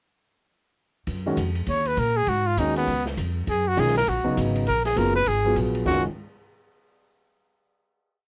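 A clear, present trumpet with vibrato carries a bebop-style theme up front from 1.7 seconds in this short, relaxed small-group swing piece in F# major at 201 BPM, moving from F#sus2 through C# to F#69 before settling on a final F#sus2 chord. Beneath it, a woody, thumpy upright bass walks with dark gut-string pizzicato and an acoustic drum kit with dark cymbals and a boomy kick rides its pattern, both starting around 1.1 seconds, while a grand piano joins at 1.3 seconds, comping in syncopated quartal voicings. The home cassette recording gives the trumpet, piano and drums a tape character, with light reverb over the whole.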